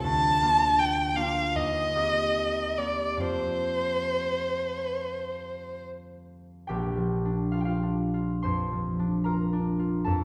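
A bowed violin with vibrato, portamento and a smooth top sings a lyrical, expressive melody up front over a mellow, ringing concert harp in this warm romantic classical fragment in Bb major, moving with a rubato feel at 63-81 BPM in a reverberant church or concert hall, until the violin falls away at 5.8 seconds and the fingerpicked harp carries on alone to 10.2 seconds.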